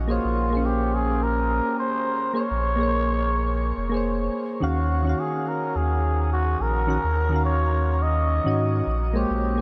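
Sunset chillout in Eb minor, this short excerpt cut from a longer piece moves at 106 BPM in 4/4 with a light 16th-note swing, carrying a smooth, wistful mood. A round, sine-like sub bass sits deep and dark beneath everything, holding sustained tones from the first moment. Soft electric-piano-like synth keys, detuned and mellow with chorus, filter sweep, shimmer reverb and delay, supply gentle decaying chords that move from Bbm9 to Ebm9 at 4.6 seconds and back to Bbm9 at 8.9 seconds. Over them a cup-muted trumpet plays a jazz-style solo line, veiled and breathy with light vibrato and a raspy, growling edge, its phrases trailing into shimmer reverb and delay. The whole mix is soaked in a huge ambient reverb that gives the recording a dreamy atmosphere.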